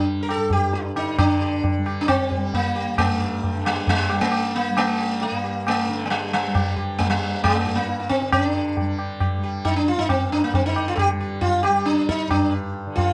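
A straight 4/4 pulse at 135 BPM carries this solemn, meditative Hindustani classical passage in raga darbari on G, tuned to A4 = 441 Hz, where a round, up-front sitar sings the melody with buzzing, shimmering sympathetic strings over a mellow, softly plucked tanpura drone, while a high-tuned tabla with a short ring, close and dry, joins at 0.3 s, all captured by detailed close microphones in light reverb.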